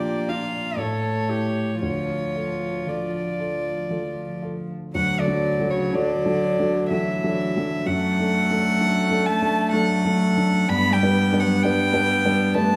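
In a rubato 3/4 at 56-66 BPM, this yearning, melancholic excerpt from a slow romantic piano quartet movement turns from D minor to D major at 4.9 s, as an up-front violin sings a rich, pure, floating sul tasto melody over a close, clear and nasal cello second line, a dark, smooth-topped viola and a worn, up-front baby grand piano with long sustain, the three bowed strings each played by one player with soft attacks, all set in a wet recital hall reverb.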